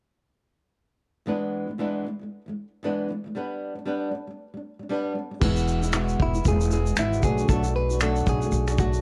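Carefree, easy-going acoustic pop with a lilting swing, opening at 1.3 seconds on a fingerpicked flamenco guitar with audible finger squeak, joined at 5.4 seconds by a woody, thumpy pizzicato upright bass, a very quiet, mellow upright piano, and a punchy vintage brush kit with dark cymbals, snaps and shaker, before a bright, compressed clean electric guitar carries the melody from 6.2 seconds through phaser, plate reverb and tape echo, all heard through a worn, warbling cassette sound in a short cut from a longer piece.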